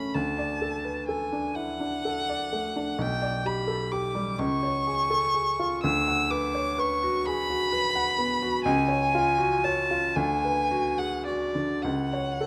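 Close, detailed microphones and light reverb give this short romantic classical duo an intimate, up-front sound, cut from a longer piece. A single bowed violin with focused tone, vibrato and a smooth top carries a melancholic, solemn melody over a warm, natural baby grand piano accompaniment, both playing throughout the 12.5 seconds. The slow, rubato 6/8 pulse of 34-44 BPM in dotted quarters unfolds over chords moving from D through G/B, C# and Bm/D to a close on F#5/C#.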